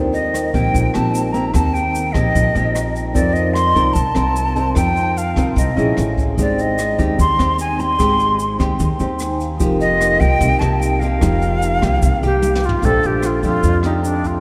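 Romantic and sophisticated, this bossa nova excerpt moves at 149 BPM in a vast, echoing cathedral-like space, where an up-front, airy jazz flute with vibrato and a crisp, chiffy attack carries the melody over fingerpicked, full-bodied nylon-string guitar and woody, thumpy pizzicato upright bass on gut strings. Ringing vibraphone with slow motor vibrato sits in the background, adding brief fills around 2.5 and 9.0 seconds. A background brush kit with a boomy kick, plus a grainy, close, dry tube shaker, keeps time, and a drum fill at 12.4 seconds leads into a new section settling on a Bbmaj13 chord.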